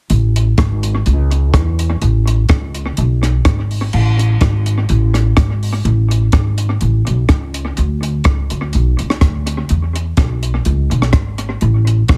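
A straight 4/4 ska pulse at 125 BPM drives this cheerful, joyful fragment in A major, tuned slightly low to A4 = 438 Hz and cut from a longer piece. An upright bass plays pizzicato from 0.1 s to 12.2 s, its steel strings giving a woody, thumpy tone that sits up front and moves between G#1 and E2. A compact cocktail drum kit runs alongside for the same span, with a punchy kick, rim clicks, hi-hat and dark cymbals, its crash included. The kit sounds smooth and rolled-off on top in a small room, and an analog delay trails its hits. The music moves into a new section at 3.9 s, and the whole recording has little reverb and a heavily compressed, radio-like character.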